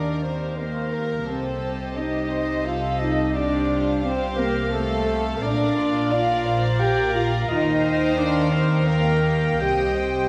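Cinematic, emotional film score for orchestra, bittersweet and moving, unfolding in a rubato 3/4 at 86 BPM in Bb major. A dark violin section carries the melody from the background with a soft, floating sul tasto tone, while a second violin section, a hollow, very quiet concert flute with vibrato, and a distant, roomy solo clarinet weave second lines around it. A rich, distant viola section fills in the accompaniment, and a mellow French horn section, the most present voice, holds sustained chords with light vibrato. Cellos and double basses anchor the bass with pure, bowed warmth. All parts play throughout this 10.3-second passage cut from a longer piece, moving through Ebadd9, Cm, Fadd9/C and Bb inside a church or concert hall with a lush scoring-stage reverb.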